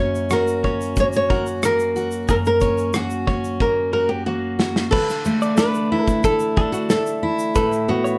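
A fingerpicked flamenco guitar carries the melody in this reflective, wistful acoustic pop excerpt, backed by a full-bodied jumbo steel-string acoustic guitar, quiet compressed arpeggios from a clean direct-recorded electric guitar, and a loose indie drum kit with dark cymbals, a tight kick and a pumping small-room sound that comes in at 0.2 seconds and plays a fill from 3.6 to 4.9 seconds, all set in a moderate studio reverb.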